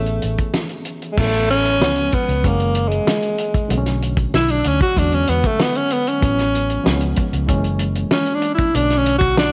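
A straight 4/4 groove at 95 BPM anchors this romantic slice of lush 1970s-style soul in A major: an up-front soul drum kit with a tight kick, fat snare, hi-hat and dark crash cymbal enters at 0.1 seconds beneath a round, foam-muted fingered electric bass thickened by tube saturation. A barky, reedy electric piano, lightly overdriven and pulsing with fast tremolo, supplies accompaniment through chords such as Amaj7, C#7, F#7 and Bm7, while a clear, forceful tenor saxophone with light vibrato and a smooth top leads the melody and takes a solo from 1.2 seconds. A moderate echo chamber reverb gives this cut from a longer piece a roomy, intimate glow.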